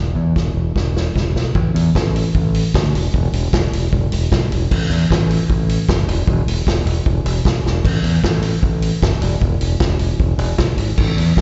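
A straight 4/4 pulse at 153 BPM drives this short, restless fragment of indie rock, cut from a longer piece and carrying a bittersweet edge. A growling fingered electric bass opens alone, its overdriven, punchy tone sitting up front and low in the register. A vintage acoustic drum kit joins at 0.4 seconds with a natural small-room character: dark cymbals, a medium-tuned snare, a tight kick, hi-hat and crash, with a rolled-off top. A drum fill marks the opening passage before the music settles into its main section at 1.6 seconds, and another fill arrives at 7.7 seconds. The sound is that of a live gig heard through the venue's PA, with recital hall reverb and a muffled upper end.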